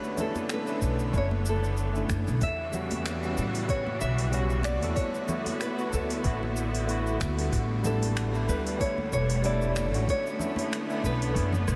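Swung sixteenths at 94 BPM in 4/4 give this short sunset chillout cut, taken from a longer piece in E dorian, a smooth, wistful sway. A smooth R&B drum kit of cabasa, finger snaps, metallic hi-hat and rim click sits low in the mix with an overdriven edge, while very quiet congas ring close and dry from 0.2 s, and a soft, overdriven electronic kick joins the woody, dark pizzicato upright bass up front at 0.8 s. A small, warm, fingerpicked nylon-string guitar carries the melody between A4 and E5, trailing delay and shimmer reverb, over a bright, barky, clean tine electric piano that also trails delay and shimmer. Clear symphonic strings hold bowed, evenly sustained chords with light vibrato through a progression that moves from Bm11 through Em69, D69 and A9sus4 before returning to Bm11. A huge ambient reverb with a 7.7-second tail soaks the dreamy mix, and lossy compression artefacts hang in the sound.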